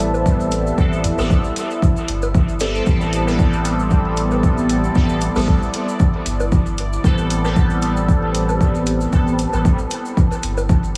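Heavily compressed with a radio-like sound, light reverb, and digital and small-room ambience, this nocturnal, deep dub techno excerpt at 115 BPM rests on an Am9 chord in A minor with a swung sixteenth feel. Dry, tape-warm electronic bongos and toms with dub echo enter at 0.1 seconds. A punchy, layered kick, re-recorded in a small room, then sits up front from 0.3 seconds over a round sine sub bass, metallic analog hi-hats and a grainy, saturated tube shaker. A juicy, detuned sawtooth polysynth plays bright, resonant filter-sweep stabs through chorus, phaser, sidechain pumping and dub echo until 9.4 seconds, above a bubbling background texture of random filter steps with slow attack and built-in reverb.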